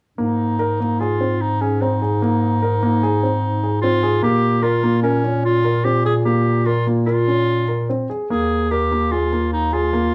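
From 0.2 seconds a clarinet, grand piano and bass clarinet begin together in this restless, playful piece of contemporary chamber music, moving at 148 BPM in an uneven 5/4 with a straight feel in Ab major, cut from a longer work. The bright clarinet carries a second line up front, the dark, worn piano plays intimate arpeggios with its action audible, and the mellow, smooth-topped bass clarinet holds the low end, both clarinets in a classical style. The harmony passes from Abadd9 to Bbm and then Ebsus4 in a dark, warm production with a moderate studio reverb.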